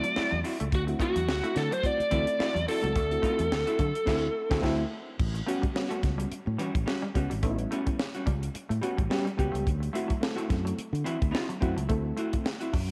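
Funky and strutting, this funk excerpt moves at 107 BPM in 4/4 with a light sixteenth-note swing, built over D9 and A13 chords. A tight, dry drum kit with bright cymbals and a high-tuned snare sits up front, joined by a punchy fingered electric bass, while a dark hollow-body jazz guitar, a clean electric guitar riff with subtle chorus in the background, and reedy electric piano stabs with fast tremolo fill out the groove. A biting, overdriven lead guitar carries the melody only until 4.6 seconds, and a band accent from 4.1 seconds leads into a new section at 5.2 seconds, all set in a moderate echo-chamber and small-room reverb.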